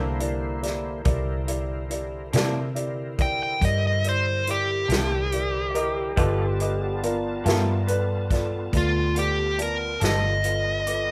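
A dark, overdriven lead guitar takes the melody from 3.2 seconds, smooth and up front over a gritty, rollicking slow blues in 12/8 that moves from C9 to G9. A woody upright piano carries a second line until 8.5 seconds, while a mellow grand piano with audible action noise, a lo-fi, slightly broken-up guitar through a small old amp with tremolo that stops at 10.3 seconds, and a reedy tonewheel organ with key click, chorus vibrato and a slow rotary speaker fill out the accompaniment. A round, foam-muted electric bass and a natural country drum kit with a punchy kick, hi-hat and medium-tuned snare drive this excerpt of a band playing live in one room, touched with light reverb.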